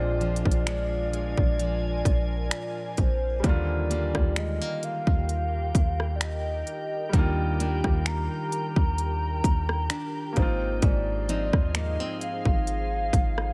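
An up-front trap drum kit, with a hard-clipped kick, crisp hats, finger snaps and rim clicks, enters at 0.2 seconds and drives this tender, dreamy contemporary R&B excerpt in a lightly swung 4/4, underpinned by a deep, boomy 808-style bass. A hollow, woody clarinet-like synth lead carries the melody with warbling vibrato, chorus and tape echo, while a fingerpicked nylon-string guitar arpeggiates with audible finger squeak and an intimate baby grand piano, its action noise audible, plays accompaniment. Softest of all, an ethereal, airy pad holds sustained chords with ensemble chorus, built-in reverb and sidechain pumping, as the harmony moves from Bb7 to Ebmaj7 at 3.4 seconds and on to Ab6, all in a dry, close mix.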